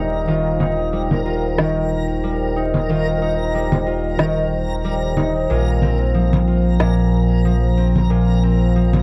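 A fingerpicked concert harp rings up front with arpeggios through a low-pass filter sweep and tape echo in this warm, delicate folktronica excerpt in Eb major at 92 BPM, with a gentle 16th-note swing, moving from Ebadd9 to Bbsus2 at 5.5 seconds. A round, deep analog bass sits beneath, while a warbling, lo-fi, detuned pad holds dark chords in the background and a reversed, dreamy, granular texture adds a bright swell. Electronic congas and a woody snare enter at 0.6 seconds with a tape-warm, roomy character, all under light reverb and a bed of vinyl crackle.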